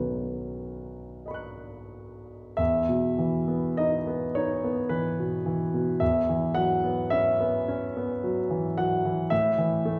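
Heard from further back in a recital hall, the recording carries a wet reverb that hangs for about 1.5 s around a clear, smooth grand piano with a vintage, up-front character. This hazy, serene impressionist classical fragment, cut from a longer piece, moves in a slow, rubato 3/4 with the solo piano ranging from B1 up to F#6. A brief opening gives way at 2.6 s to a new passage that drifts through suspended harmonies until the close at 10.0 s.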